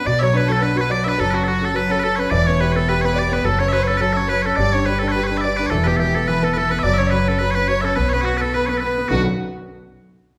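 A driving reel pulse in 4/4 with a light swing on the eighth notes opens this short, wild Celtic folk excerpt, cut from a longer piece. Loud, piercing bagpipes carry the melody up front in a continuous solo line, while a single bowed fiddle, biting and nasal with light vibrato, plays a second line alongside them. A felt-muted upright piano adds another soft, mellow second line in the background, and a second upright piano, woody and up front with audible action noise, supplies the accompaniment. Plucked upright bass on steel strings holds down the low end with a dark, acoustic tone. The band sounds as if playing live in one room, bathed in a large, wet studio reverb, with the harmony moving from B minor through E minor, G and E before returning home as a new section begins at 9.1 seconds.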